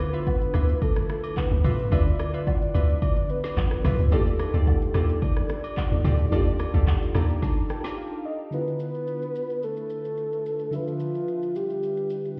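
Soulful, deep amapiano at 109 BPM in D dorian, this excerpt sets a round, octave-layered synth lead and a lush FM electric piano with chorus and tremolo over an up-front deep house kit with a woody snare and a tight, punchy log drum bass that drops out at 7.4 s along with a bouncy, hollow square pluck, while background woodblock and agogo bells add dry accents, an electric piano fill runs from 6.9 s through a brief break at 8.0 s, and the whole mix sounds muffled, as if heard through a wall from a stone room.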